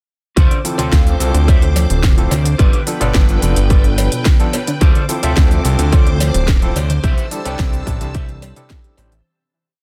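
Nu-disco at 108 BPM in D dorian, this short, sleek and cosmic piece is a drop from the start, cycling through Dm7, G7 and C6 before fading out from 6.3 seconds. A punchy four-on-the-floor kick and a fat, detuned sawtooth bass with filter sweeps drive it up front, while a house kit adds crisp hats, shaker and a cracking disco backbeat, and a saturated cowbell sits in the background. Lush, vintage string-machine chords pump against the kick under ensemble chorus, a very quiet ring-modulated unison pluck runs an eight-step arpeggio, a dark, clean guitar plays a funk riff through chorus and dub echo, and a barky, overdriven tine electric piano stabs syncopated chords with fast tremolo, all in a dense, heavily limited mix.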